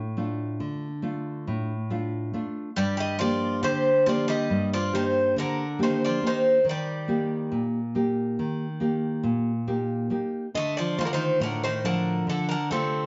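Greek folk in 9/8 at 139 BPM, dark and melancholic in D phrygian, opens with a full-bodied, fingerpicked nylon-string guitar playing accompaniment up front alone until two bouzoukis enter at 2.8 seconds. One bouzouki carries the bright, metallic melody on doubled strings with plate reverb, while a second, quieter bouzouki traces a lower supporting line on its own octave-doubled courses as the chords move from Gm to Eb and back to Dm at 10.6 seconds. The short, moderate room reverb and a distant sound, dulled at the top, give this fragment of a longer piece an enclosed feel.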